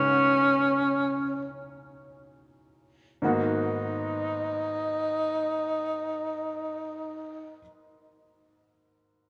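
Wistful and melancholic, this brief jazz fragment drifts in an unhurried, rubato way, easing into a slowdown over its opening 3.2 seconds. A breathy tenor saxophone carries the melody up front as the solo voice, its mellow subtone tone shaded with vibrato, scooped notes and a smooth top, staying within a narrow middle range before it falls silent at 7.6 seconds. A baby grand piano accompanies beneath it, its natural, intimate sound showing audible action noise and a short sustain as it reaches from deep bass into the middle register. The harmony moves from C#m7 to G#m9 as the second section begins at 3.2 seconds, and the piano carries on alone until 9.3 seconds. A wet plate reverb places the performance further back in the room, lending the whole fragment a spacious glow.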